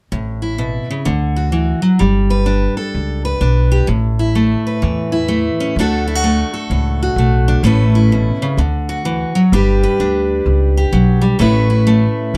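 Country music with a nostalgic, sunny mood and a relaxed swung lilt, cut from a longer piece. A picked steel-string acoustic guitar carries the accompaniment from start to finish, its bright, full-bodied dreadnought tone sitting up front. Beneath it, an upright bass played pizzicato on gut strings gives a woody, thumpy foundation across the whole passage. The harmony circles through Aadd9, D and G with an Asus2 along the way, and a second section arrives at 7.6 seconds before settling back on Aadd9. Light reverb and a dark, warm production give the duo a cozy, intimate sound.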